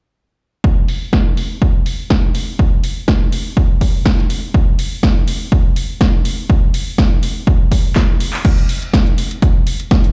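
An overdriven analog kick drum opens this sunny, funky house excerpt at 0.6 seconds, sitting up front and hitting hard at 123 BPM in 4/4 with a light swing on the sixteenths. At 0.9 seconds a drum machine joins with crash cymbal, handclaps, hi-hat and a punchy snare, its gritty tone placed a little further back than the kick. Sidechain pumping and low-pass filtering shape the hats and cymbals, the snare is filtered too, and a short room surrounds the snare, clap and hats. Both drum parts sound as though played through a big system in a bare, large room, and a light studio reverb adds space. A drum fill at 8.0 seconds leads into a new section at 8.4 seconds, and the groove carries on until the clip ends.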